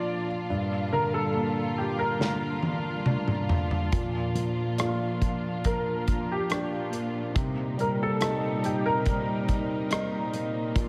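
Tender and hopeful, this slow 70 BPM pop ballad excerpt opens with an intimate, clear grand piano melody carrying an ensemble chorus and diffuse ambient delay over a deep, long-sustaining concert grand accompaniment and smooth bowed strings with vibrato, while a dark, up-front acoustic drum kit arrives with a fill at 2.2 seconds and a full-bodied fingerpicked steel-string guitar drifts in with arpeggios at 3.9 seconds, all bathed in a dreamy plate reverb through chords moving from Gm7 to Bb to Cm7.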